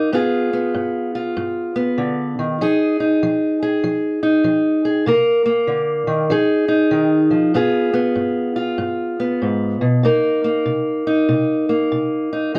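Dark, warm small-room production frames this brooding, soulful swung blues excerpt, where a lone fingerpicked steel-string acoustic guitar with a boxy parlour tone sits up front, moving through minor and altered dominant chords before settling on the home minor chord at 10.0 s.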